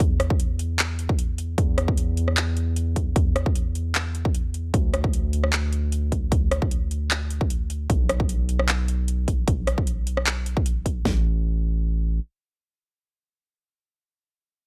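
This bittersweet, lush future bass excerpt opens straight into a drop. A deep, sine-toned 808-style bass plays long notes with a fast attack and decay, colored by tube saturation and sidechain pumping. A dubstep kit plays alongside it: a punchy kick, a huge snare, handclaps, rim clicks and metallic hi-hats. At 152 BPM in 4/4, with a half-time feel and a light 53% swing on the 16ths, the tape-warm drums sit up front with little reverb until they drop out by 11.2 s, and the bass carries on alone until 12.2 s.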